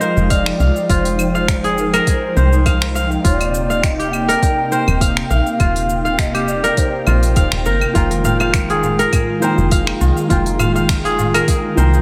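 Soaked in dreamy plate reverb, this meditative organic downtempo excerpt in F minor at 102 BPM, with a light 16th-note swing, sets crisp fingerpicked kora arpeggios up front over a chorused sawtooth analog pad and a round, woody FM bass that both pump with the sidechain, while a deep house kit of smooth hats, cabasa, claves and finger snaps and a soft, overdriven electronic kick carry the groove; a distant, hollow bass bansuri with vibrato sings the melody until 7.7 s, and a boxy, felt-muted upright piano with audible action noise enters at 7.9 s, soon joined by a high-tuned, ringing tabla in the background, as the chords move from Fm9 to Cm7/Eb and back.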